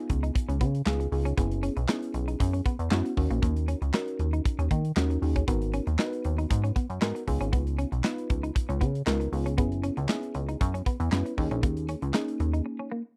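Funky and late-night, this excerpt of early-eighties boogie funk moves at 117 BPM in straight 4/4, where a glossy, nasal chorused synth bass and a tight, up-front acoustic drum kit of kick, snare, hi-hat and handclaps carry the groove beneath a soft, round FM electric piano treated with chorus and phaser and a clean, hollow-body guitar riff with analog chorus, all in a dry, close 1970s-style studio sound over chords moving from C#7 through F#7sus4, D#m7 and G#m7 before a brief break at 12.7 seconds.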